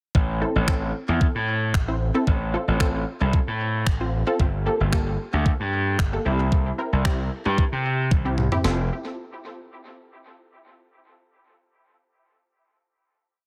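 A gritty, overdriven slap bass anchors this carefree, euphoric dance-pop piece, its bright, punchy tone sitting up front with a syncopated figure that pumps against the beat. Alongside it, a clean 12-bit drum machine with a sampler-style character drives a four-on-the-floor pattern at 113 BPM in 4/4, mixing a thumpy kick, a medium-tuned snare, finger snaps and toms, with a roomy re-recorded sheen. From 0.4 seconds a lush, detuned sawtooth unison pluck adds syncopated chord stabs in close voicing, shaped by a filter sweep, sidechain pumping and dub echo. The harmony in F major moves through Am, F/A, Gmadd9 and C. A drum fill at 8.1 seconds leads into a closing F chord at 8.6 seconds. The mix is dry on reverb but heavy with echo, giving the short piece a bouncy, spacious lift.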